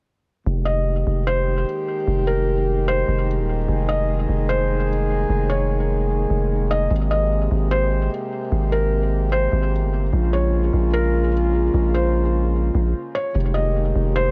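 A deep, sine-toned 808-style bass with a fast attack sits up front in this spacious, hazy cloud-rap excerpt at 149 BPM in a half-time 4/4 feel, holding long decaying notes from 0.5 seconds beneath close-miked, classical-style French horn section chords and a soft, intimate felt-muted upright piano melody that is low-pass filtered and delayed with audible action noise, as the F minor harmony moves from Fm11 through Abmaj9 and Bbm7 to a short break at 12.9 seconds before landing back on Fm11, set in light reverb and studio ambience.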